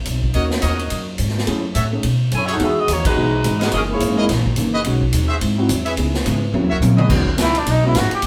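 Heard through the wet sound of a small room, this brassy, energetic big band swing excerpt captures a band playing live together at a fast 213 BPM in 4/4, with a swung eighth-note feel in B major. An upright bass plucks woody, steel-strung lines under a natural-sounding, up-front drum kit with a punchy kick and medium-tuned snare, while a concert grand piano with deep bass and short sustain comps alongside clear, softly attacked trumpet stabs. At 2.3 seconds a smooth saxophone section takes the melody up front with light vibrato, and a full-bodied, picked acoustic guitar settles into the background just after. The harmony moves through colourful jazz chords such as Emaj9, F#13 and G#7b13, with a band accent early on and a drum fill starting at 6.5 seconds. At 7.4 seconds a raspy, gritty trumpet steps forward for a short growling solo, full of scooped notes and vibrato with a distant, roomy tone.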